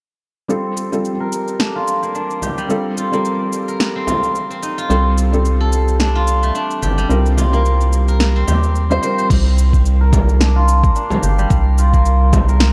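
This mystical organic downtempo piece opens at 0.5 s with a soft, felt-muted upright piano, its action noise audible and its tone pumped by sidechain and shaded with low-pass filtering, tape echo and shimmer reverb. Beside it, a steel-string zither played with fingerpicks spins ringing, silvery arpeggios through a filter sweep, echo and shimmer, over a punchy, layered deep house kit of snare, shaker and crash cymbal at a swung 109 BPM. A deep, distant frame drum struck with hard hands soon joins, and at 4.9 s a round, up-front analog bass of square and sine waves with wave-folding pumps beneath chords moving from Bbmaj7 through Eb69 to Cm7; at 9.3 s the piano drops away as a deep electronic kick arrives and the harmony shifts to Bb/C, set in a dark, warm production with light reverb.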